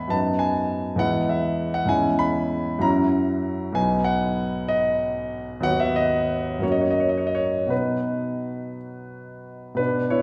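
A concert grand sits up front in a resonant hall, its natural tone anchored by a deep bass and surrounded by a generous, lingering reverb. This brief passage from a longer romantic character piece for solo piano unfolds in a lilting 6/8 with free, expressive rubato, its mood lyrical and passionate. The harmony moves through a simple, heartfelt progression that settles back home by the close at 10.2 seconds.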